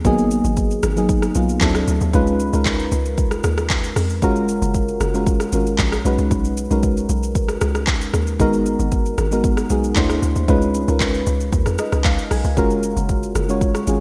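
A straight amapiano groove with a late-night, hypnotic pull, built on an up-front deep house drum kit of deep kick, metallic hi-hat, handclaps, rim click and shaker roughened with overdrive, 12-bit sampler grit and gated reverb, under a hollow, bouncy log drum bass and a soft, round, warbling FM electric piano with chorus that moves through lush jazzy ninth chords and adds a brief fill at 11.5 seconds, all set in a lush hall with bright 1980s-style digital sheen in this cut from a longer piece.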